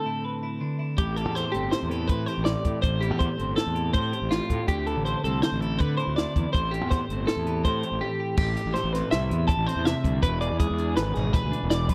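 Set in an odd 5/4 metre at 162 BPM with a straight feel, this short cut from a longer math rock and midwest emo piece in A minor feels restless and wistful. Two bright, clean, compressed, picked twelve-string electric guitars open together at 0.0 s, one playing accompaniment while the other plays arpeggios in a higher register with a twangy edge and spring reverb. At 1.0 s a fuzzy fingered electric bass with overdrive and a compact cocktail drum kit join, the kit sounding dry and natural with a punchy kick, high-tuned snare, hi-hat, crash and dark cymbals sitting up front. The harmony moves between Dsus2 and Am7, and after a brief break at 8.0 s a new section arrives, turning to E7 at 10.2 s. The dry, close, 1970s-style studio sound keeps every instrument immediate.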